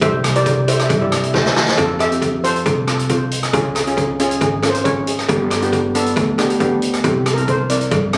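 A straight 4/4 calypso groove at 137 BPM drives this sunny, festive excerpt, where a mellow steel pan played with soft rubber sticks carries the melody over a bright, close-miked, dry second pan struck with hard rubber sticks, a woody, thumpy pizzicato upright bass on gut strings, a boomy-kicked street-band drum kit with a rolled-off top sitting up front, and a vintage, band-limited cowbell, until a drum fill at 1.3 seconds opens into a steel pan solo from 1.8 seconds over chords moving from Fmaj7 through Db and G to C7, all captured on a phone in the room with club reverb and compression.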